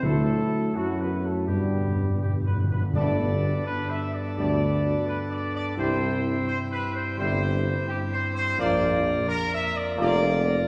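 A dark, up-front trumpet section carries the melody of this regal, triumphant classical fanfare, cut from a longer piece and moving at a stately 85 BPM in straight 4/4. Beneath it, a clear trombone section and a warm French horn section with light vibrato hold sustained chords in the background, while a mellow tuba anchors the bass. Timpani struck with hard mallets add an articulate, close punch and a fill from 1.5 to 3.0 seconds before falling silent at 4.0 seconds. At 3.0 seconds a chamber organ enters up front with a full principal chorus and audible chiff, thickening the harmony as the music shifts from Dadd9 and G through Gadd9, C and Bb. A roomy concert hall reverb places the ensemble further back, giving the brass a distant, ceremonial grandeur.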